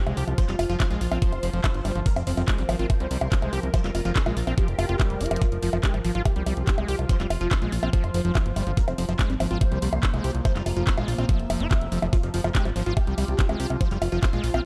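A straight 4/4 pulse at 143 BPM drives this dark, alien psychedelic trance excerpt in F minor, where a knocking electronic kick sits up front over a layered kit of bongos, handclaps and hi-hat in small room ambience (with a drum fill at 5.2 seconds), while a fat, detuned analog bass with ring modulation anchors the low end beneath a squelchy, gritty acid riff with distortion and digital delay, a punchy unison supersaw stab melody through phaser and delay, and a mellow, morphing wavetable pad in the background with chorus and reverb, the stab, acid riff and pad all pumping with sidechain compression.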